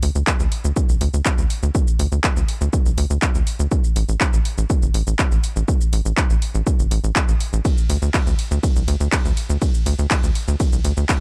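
A dry, close mix carries this driving, dark melodic techno excerpt at 122 BPM in straight 4/4, tuned to A4 = 439 Hz, where a tight, punchy sawtooth-and-square sequencer bass with a fast-attack filter pluck and sidechain pumping sits up front between G1 and D2, joined at 0.3 s by a heavy, layered, tape-warmed electronic kick, also up front, while a small-room techno kit adds handclaps, hi-hat, ride cymbal and shaker at a lower level beneath.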